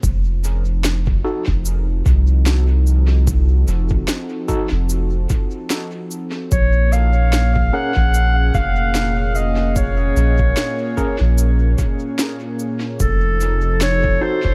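This excerpt from a longer ambient dub piece sounds hazy and deep, steeped in digital echo, with tape-softened drums that carry a small-room character. A smooth, detuned sawtooth pad with chorus fades in across the whole passage, holding mellow sustained chords over a round, up-front sub bass with a fast attack. A muffled, thumpy, pitched-down kick anchors a lightly swung 4/4 groove, while an electronic cabasa and a woody snare ring out through dub echo. From 1.2 seconds, a barky, overdriven tine electric piano plays gritty stabs through a combo amp, shimmering with fast tremolo and echo. At 6.5 seconds a distant, roomy clarinet enters with a classical-style solo melody, its line trailing into dub echo.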